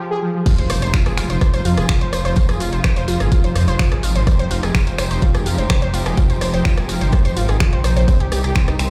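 This excerpt sounds as if it is played through a big sound system in a bare room, with a light digital ambience and a large studio reverb around it. The driving, cinematic melodic techno track is cut from a longer piece, and after a brief break it drops at 0.5 seconds. A punchy, layered electronic kick sits up front, joined by a produced house kit of bright hi-hats, finger snaps, rim clicks and crash cymbal, while a jingly acoustic tambourine stays in the background. Beneath them, a deep, rumbling detuned saw bass adds saturated, beating weight, and it pumps with the sidechain, as do the strings and pluck. Above, a bright, wave-folded unison pluck plays arpeggios trailed by dub echo, and a clear studio string section holds smooth, bowed chords with vibrato. A very quiet electronic impact marks the drop and ends by 2.4 seconds, and the harmony moves from Fm7 to Cm at 8.1 seconds.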